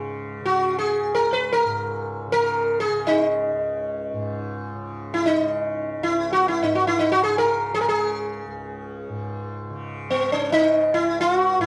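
A plectrum-plucked sitar sits up front, its buzzing tone ringing with sympathetic strings and a plate reverb as it enters at 0.5 seconds to unfold an introspective, longing line in raga kafi on C#. Beneath it, a softly plucked tanpura holds a low, shimmering drone from the very start. This free-time Hindustani classical fragment, cut from a longer piece, was captured as a home cassette recording, lending both instruments a tape-worn character within a short, wet studio reverb.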